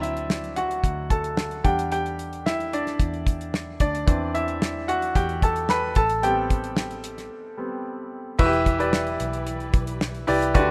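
A straight 4/4 pulse at 111 BPM carries this uplifting piano-driven pop passage, cut from a longer piece. A dry, tight 70s drum kit sits up front with kick, medium-tuned snare, hi-hat and crash, beneath a dark, round, foam-muted picked electric bass. A brilliant, polished concert grand with short sustain and deep bass takes the spotlight over chords moving from D7 through Em7, Cadd9/E and Am7, with a break at 7.3 seconds. At 8.4 seconds the music shifts to Em, and a lush bowed string section with vibrato and portamento enters softly in the background, giving the warm, rough home-demo sound of a small room a gentle lift.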